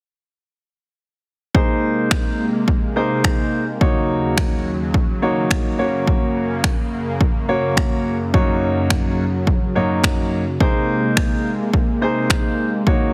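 A punchy analog drum machine enters at 1.5 seconds with a tape-warm kick and finger snaps, sitting up front in a driving, bittersweet dance-pop groove at 106 BPM in straight 4/4. Alongside it, a concert grand piano plays accompaniment from Gb2 up to Db5, its open tone, deep bass and long sustain placed close to the listener. With the piano, a soft supersaw holds sustained chords between Eb2 and Bb3, smooth and mellow with a detuned unison sawtooth character, a gentle attack and a moving notch. Both the piano and the supersaw breathe with sidechain pumping as the harmony moves from Abadd9 through Ebm7, Gb and Ebm7/Gb before returning to Abadd9 at 10.6 seconds. Light reverb and a heavily compressed, radio-like sound shape this short section, cut from a longer piece, which runs to about 13.1 seconds and is tuned slightly below standard pitch at A4 = 437 Hz.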